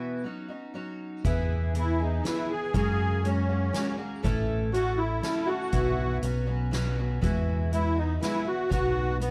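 A musette accordion carries the melody from 1.8 seconds, its reedy, shimmering tone sitting up front in this short, nostalgic acoustic folk waltz in E major at 121 BPM. The piece opens on fingerpicked twelve-string acoustic guitar alone, bright and octave-doubled, with audible finger squeak as it sets out the accompaniment. At 1.2 seconds a fingered electric bass arrives, round and punchy with an amped, dark edge, alongside a soft-mallet drum kit whose fat snare, boomy kick and hi-hat keep the 3/4 pulse gentle. The harmony drifts through colorful chords such as F#add9, A, Bsus4 and Eadd9 before settling on B, lending the passage a wistful, unresolved quality. The overall production is dark and close, with little reverb, giving this excerpt an intimate, homespun character.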